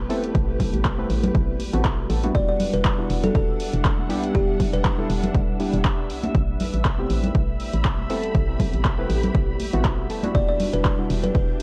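A deep, warm deep house groove, cut from a longer piece, rides a swung 4/4 pulse over chords moving between Am9 and Em9. An overdriven, up-front electronic kick and a dry analog drum machine with handclaps and hi-hat carry a gritty 12-bit edge, while high-tuned congas ring softly in the background. A hollow, bouncy FM bass with tube saturation pumps against the kick, and round sawtooth keys play chorused stabs with filter sweeps, sampler grit and analog delay. Underneath, a very quiet flute-like pad, a rich bowed string section with vibrato, and, from 3.1 seconds, a silky phased string machine fill out the harmony. A buzzing, woody kalimba adds short, bright thumbnail-plucked phrases from 2.3 to 5.4 seconds and again at 10.3 seconds, all set in a dry space with a cassette-tape sheen.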